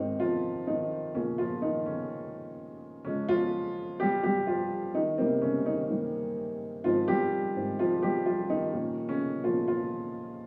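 Pop in an anthemic, warm mood, this brief excerpt cut from a longer piece features a lone upright piano playing throughout its 10.5 seconds, moving through a major-key progression in a straight four-beat pulse. The piano sits up front with a dark, woody, vintage tone and short sustain, voiced in its lower and middle register. A moderate large-studio reverb surrounds it, blended with the small-room ambience of a live take.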